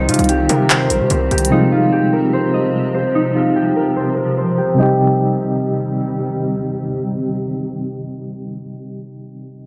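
A half-time trap groove opens this eerie, hard-hitting hip hop excerpt, with electronic handclaps and bright hi-hats alongside a heavy, saturated 808-style bass and a barely audible downlifter, all of which drop out at 1.5 seconds. A fingerpicked concert harp carries the ringing acoustic melody up front over mellow, chorused electric-piano-like synth keys with tremolo and a blurred granular cloud pad that evolves with its own built-in reverb. A filter sweep runs through the opening 4.8 seconds, and a moderate digital room reverb holds the parts together.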